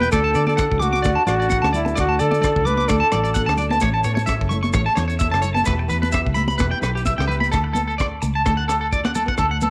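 Sunny and joyful, this 130 BPM highlife guitar band piece in D major swings lightly, with a breathy, scooped jazz trumpet up front until 3.6 s beside a bright, twangy, slightly broken-up electric guitar playing arpeggios through tape echo; a round, foam-muted bass and a tight funk kit of hi-hat, kick and rim click drive it, while a fingerpicked nylon-string guitar, a mellow slow-rotary tonewheel organ holding chords until 7.5 s, damped high-tuned congas and grainy maracas sit in the background of a cassette home recording with moderate spring reverb.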